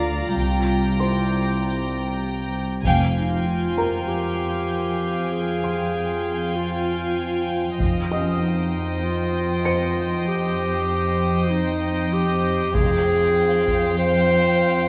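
Cinematic suspense film score with a mysterious, tense mood, heard as a short cut from a longer piece in a straight four. Two violin sections carry the upper lines, bowed sul tasto with soft attacks: the melody sits in the background with light vibrato, while the symphonic section's second line floats pure beneath it. An intimate cello section holds the bass up front, and a dark French horn section sounds distant, roomy chords only until 2.2 seconds. A drifting glass-harmonics texture with chorus and its own reverb sustains sine-like chords throughout, and a felt-muted upright piano adds mellow, short-sustain figures with audible action noise until 12.8 seconds. A bright solo clarinet enters at 3.2 seconds with a classical second line, just after a band accent at 2.9 seconds. A woody, distant double bass section and hard-stick taiko drums with a vintage, band-limited sound appear only in brief bursts, the harmony moving from C7 through Fmadd9 and Cm/F inside a moderate scoring-stage reverb.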